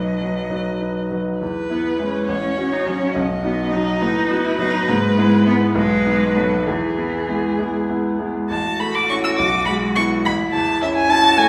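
A rich, expressive violin carries the melody with vibrato and portamento over a clear, focused bowed cello second line and a bright, brilliant grand piano accompaniment with long sustain, in a lively, spirited classical-period piano trio movement in E major and 6/8 at 64-72 BPM in dotted quarters with a rubato feel, heard as a passage cut from a longer piece that moves into new material at 8.5 s, all set in the lingering reverb of a recital hall.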